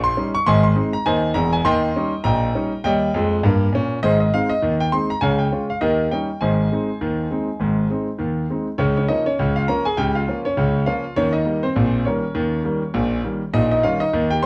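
Cheerful and lively, this ragtime piano piece moves at 101 BPM in 2/4 with a swung sixteenth-note feel, set in Ab major and tuned slightly sharp to A4 = 445 Hz. A solo concert grand plays throughout, warm, vintage in character and up front, its deep bass and smooth tone stretching from Fb1 to Db6 over chords that circle Ab, Eb7 and Db. A moderate club reverb gives the room a short, lively tail, and this passage, cut from a longer piece, states its opening phrase twice, with the repeat beginning at 8.8 seconds.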